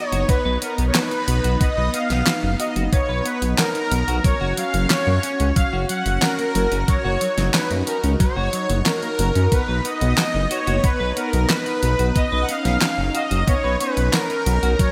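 Bright 1980s-style digital production bathed in a lush hall reverb gives this uplifting, nostalgic synthwave excerpt its glossy sheen, with an overdriven, thumpy electronic kick and a deep, rumbling detuned saw bass sitting up front from the opening moments. A soft, airy supersaw carries the melody through a digital delay, shadowed in the background by a shimmering vintage string machine, while a smooth analog pad holds sustained chords through a chorus effect. A twangy clean electric guitar plays a picked riff dressed in lush chorus and delay, and a fat-snared pop drum kit adds handclaps and hi-hat as the harmony moves between Bmaj7 and F#.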